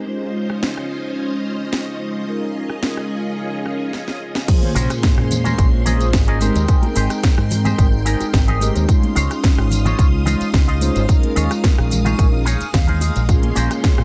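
A punchy, up-front electronic kick arrives at the drop at 4.5 seconds, driving this sleek, cosmic nu-disco excerpt in Bb dorian at 109 BPM, along with a very quiet sub drop, soft-handed maracas, bongos and congas, and a bright, envelope-filtered fingered bass. Before that, a round, dark synth brass with chorus, vibrato and dub echo floats over lush string-machine chords, both pumping from sidechain compression, as a house kit with a cracking snare, metallic hats, rim click, tambourine and crash enters at 0.5 seconds and plays a fill into the drop. A clean, scooped, picked electric guitar riff through an envelope filter rides the Dbmaj9, Eb9sus4, Bbm9 and Abmaj7 changes and adds a fill near 12.2 seconds, all in a dry, low-pass-filtered mix with a tape-warm sheen on the drums.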